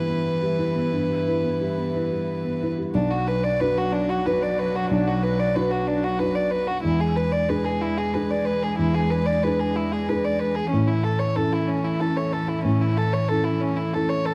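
Neoclassical piano and strings in B minor, a longing, reflective passage cut from a longer piece, moving in a rubato 3/4 at 93 BPM, where an up-front violin sings the melody with an airy, pure sul tasto tone in plate reverb, a close cello with light vibrato carries a second line, a felt-muted upright piano gives boxy, mellow accompaniment with audible action noise, and a chamber string section holds sustained chords in the background, while the harmony moves from Em/G to Bm at 2.9 seconds, then to E7 and A, inside a dark, warm production with light reverb.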